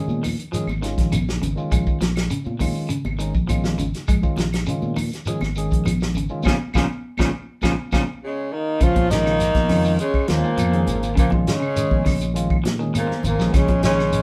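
Barky, lightly overdriven tine electric piano and twangy, slightly broken-up electric guitar arpeggios open this hypnotic, intense afrobeat cut at 102 BPM in Bb minor, joined by round fingered electric bass, a tight, up-front soul drum kit, high-tuned congas, grainy shekere and woody claves in the background, before a band accent, electric piano fill and drum fill lead into a breathy baritone saxophone line at 8.2 seconds, followed at 8.3 seconds by a bright, scooped trombone melody over a raspy tenor saxophone line, all in a live room with moderate reverb.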